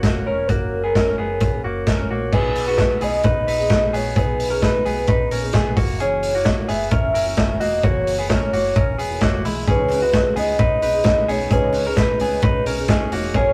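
A warbling, detuned lead carries a nostalgic chorus-tinged melody over an up-front vintage drum kit with a punchy kick and dark cymbals in this breezy, youthful excerpt of jangly indie pop at 131 BPM in B major, where a bright, twangy clean electric guitar plays compressed arpeggios, a shimmering fingerpicked twelve-string acoustic guitar and a round dub bass sit in the background, and a worn, woody upright piano enters at 9.7 seconds with a crisp group handclap at 9.9 seconds, all captured in a rough rehearsal-room recording.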